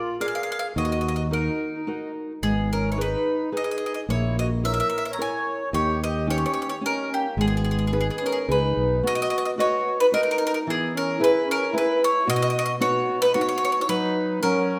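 Wistful and romantic, this Italian folk serenade in 3/4 sets a brilliant-toned, picked bowl-back mandolin melody up front over a reedy, airy accordion second line and a small, fingerpicked nylon-string guitar, while a growly, overdriven fingered electric bass sits up front from 0.8 s until 9.0 s, when the music moves into a new section, all within a wet recital hall reverb in this excerpt from a longer piece.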